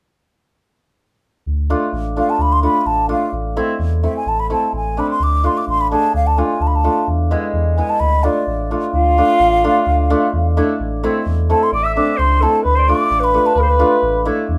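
In a straight 2/4 pulse at 129 BPM, this bittersweet yet festive klezmer excerpt in D dorian sharp4 sets a mellow, hollow concert flute melody with vibrato over a deep, full sub bass and a bright, shimmering hammered dulcimer moving through Dm, Am and E, while a clear, smooth-topped clarinet joins as a second line at 8.9 seconds, all in a moderate studio reverb.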